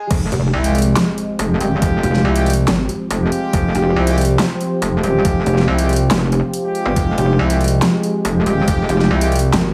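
Heavy wobble dubstep in F minor at 140 BPM with a half-time feel, this menacing, chaotic drop, cut from a longer piece, opens on an Fmadd9 chord as a very quiet electronic impact hits until 1.8 seconds, while a metallic, aggressive FM wobble bass and a pulsing, heavy pluck wobble bass, both saturated with chorus and overdrive and sitting up front, churn under a lush, detuned supersaw pad that pumps through sidechain and a low-pass filter, a knocking overdriven electronic kick, a layered kit with a huge snare, bright hats, handclaps and crash, and tight, clear classical-style brass stabs trailed by digital delay, all set in light studio reverb.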